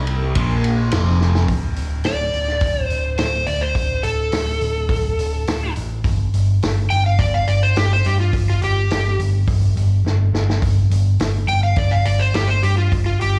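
An overdriven slide guitar carries this heavy, brooding blues rock and southern rock cut from 2.1 seconds, soloing up front with slapback echo over a growly, punchy picked electric bass that runs throughout. The opening features a bright, double-tracked overdriven guitar riff with phaser and slapback echo, which stops at 1.5 seconds, while a vintage drum kit with dark cymbals and a rolled-off top adds a fill around 10.1 seconds. The performance sounds like a live club gig heard through the venue's PA, with small room ambience and club reverb.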